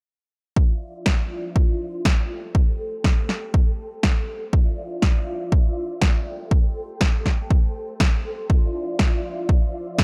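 A punchy analog kick drives this nostalgic, funky filtered disco house excerpt, joined at 1.1 s by an up-front snare on a lightly swung 16th-note groove, while a lush vintage string machine sustains soft-attack Dm9 and Am7 chords through phaser, ensemble chorus, sidechain pumping and a low-pass filter sweep, all in a dry mix.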